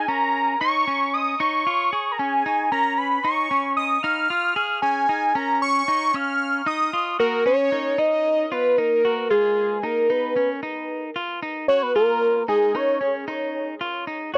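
Intricate and driving, this progressive instrumental excerpt moves in an odd 5/8 metre with a straight feel, built on shifting harmony that passes through chords such as Bmaj9/C#, Db69 and Ebm9. A fat, detuned sawtooth analog lead with a sub octave and vibrato carries the melody up front, its sustained tone treated with tape echo, while a bright, twangy clean electric guitar plays picked arpeggios lower in the mix throughout. The sound is that of a dry, close 1970s-style studio recording with light reverb, and the piece shifts into a new section at 8.0 seconds.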